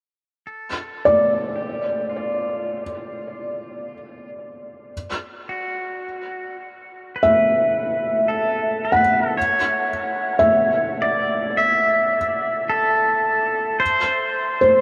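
A dark, warm production sits inside a huge, wet ambient reverb whose long tail lets every note hang in the air. This is a melancholic, spacious ambient excerpt, cut from a longer piece, moving at a slow 54 BPM in 4/4 with a straight feel. A clean, bright electric pedal steel guitar carries the melody from 0.5 seconds, fading in with twangy, compressed slide lines, volume swells and fingerpicked notes, all coloured by tape echo. At 1.1 seconds a felt-muted upright piano joins with soft, mellow arpeggios in its upper register, its thick felt and audible action noise giving it an intimate, close quality, also treated with tape echo. Both instruments sit up front, and the harmony settles onto an F#7 chord with its third omitted at 4.9 seconds before the chord drops away at 13.8 seconds, ahead of the close at 14.8 seconds.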